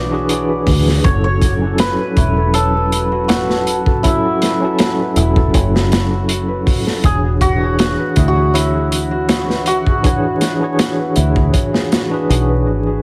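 A straight 4/4 trip hop groove at 80 BPM sets a dark, melancholic tone. A crunchy breakbeat kit of kick, snare and hi-hat comes in at 0.3 s and sits up front, saturated and gritty with a rolled-off top, while a warm fingered electric bass, foam-muted and played low, anchors the harmony as it moves from E13 to F#m7 and back to E13 at 7.0 s. A bright, shimmering hammered dulcimer carries the melody, its ringing notes trailed by tape echo. Beneath it, a clean tine electric piano pulses with fast tremolo through a combo amp, and a felt-muted upright piano plays soft, intimate arpeggios in the background, roughened by 12-bit sampler grit and tape echo, with its action noise audible. A barely audible flickering, grainy texture lingers beneath everything, and vinyl crackle and a small room ambience give this short cut from a longer piece a dusty, close feel.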